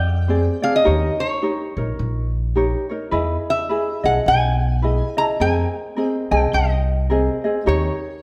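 Set in a reverberant recital hall, this short, languid Hawaiian excerpt has a lightly swung, dreamy lilt, as a nasal, metallic lap resonator guitar plays the slide melody with fingerpicks over fingerpicked light ukulele and dark, woody pizzicato upright bass, all three close and present through jazzy seventh chords like Eb7 and Emaj7.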